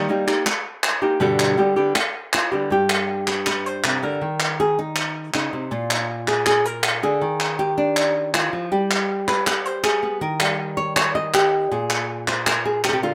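A light reverb gives this short flamenco cut an intimate yet open sound, with both parts set up front. The mood is mournful and intense, moving at 160 BPM in a straight 4/4. A fingerpicked acoustic flamenco guitar carries the melody from the start, its tone warm and marked by audible finger squeak as it ranges from G2 to Eb5. Palmas hand claps join at 0.3 seconds, crisp and acoustic with a distant, large-room character. The harmony circles around Eb and G, passing through Eb5 and Bb5 before closing on Bb7(no3), and the piece moves into a new section at 2.7 seconds. The instruments are tuned slightly above standard, to A4 = 441 Hz.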